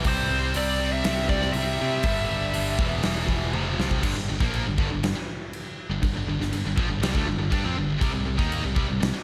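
This excerpt from a longer hard rock piece opens with a full band at once: a heavy high-gain guitar riff with distortion and slapback echo, a second overdriven guitar sitting in the background, and a very quiet, double-tracked tight distorted guitar filling out the riff. Underneath, a bright, growly picked electric bass plays directly, while a huge arena drum kit with a punchy kick, medium-tuned snare, bright cymbals and toms sits up front in a hall sound. Over this, a nasal lead guitar with a parked wah carries a short overdriven melody with tape echo from 0.1 to 3.5 seconds, ending as a drum fill leads into a new section at 4.0 seconds. Moving at a steady 121 BPM in straight 4/4, the music feels powerful and anthemic, with chords shifting through power-chord shapes before settling on C near the close. A light, small room ambience surrounds the band until the excerpt ends at 9.2 seconds.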